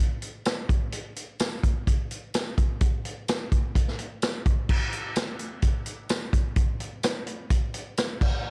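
Rock in a straight 4/4 at 128 BPM, upbeat and jangly, this short cut from a longer piece features a vintage acoustic drum kit playing from 0.2 to 8.3 seconds, with punchy kick, medium-tuned snare, hi-hat, tambourine and dark crash cymbals sitting up front in a dry, mid-forward studio room with a rolled-off top, shifting into a new section at 4.7 seconds.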